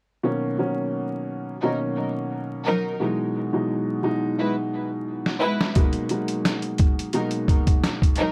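Pitched-down, compressed sampler-style drums with a thumpy kick and medium-tuned snare arrive at 5.3 seconds in this nostalgic boom-bap hip-hop excerpt at 87 BPM in B major, joining a dark, woody upright piano that plays mellow accompaniment from the start and lush bowed string stabs with vibrato and analog delay entering at 1.6 seconds, over vinyl crackle and moderate studio reverb as the chords move from Bmaj9 to Emaj7 to G#m9.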